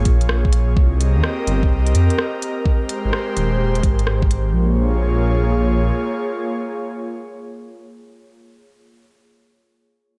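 Nocturnal and rainy, this short future garage cut moves at 127 BPM in Bb dorian with a 66% swing on the 16ths, cycling through Bbm7, Cm7 and Abmaj9. An airy, breathy pad with chorus holds sustained chords under sidechain pumping, while a dark, rumbling detuned saw bass carries a filter sweep until 4.5 seconds and drops out at 5.9 seconds. A knocking, layered electronic kick sits up front beside a crisp, overdriven electronic kit of hi-hat and rim click, and both fall away by 4.4 seconds, all wrapped in light reverb, digital ambience and a cassette tape sheen.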